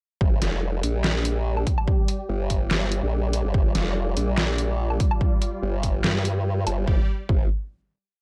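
A half-time beat at 144 BPM in 4/4, with a light 53% swing on the 16ths, drives this short, complete piece of heavy wobble dubstep in G minor, tuned to A4 = 436 Hz. The mood is menacing and chaotic: a punchy, layered electronic kick lands from 0.2 seconds, joined by an up-front dubstep kit of deep snare, closed hi-hat, handclaps and a low woodblock, both re-recorded in a large room. Beneath them, a saturated, compressed formant-sweep wobble bass built from pulse and sine waves carries modulated phrases with a changing wobble rate, thickened by chorus and overdrive between F1 and G2. Set lower in the mix, huge, lush supersaw chords hold a G5 chord across the drop, their bright, detuned sawtooth unison shaped by a moving notch and pumped by sidechain under a low-pass filter. The drop runs until 6.9 seconds, when a final chord rings out to close the piece. The production is dark with light reverb, keeping the drums and bass firmly up front.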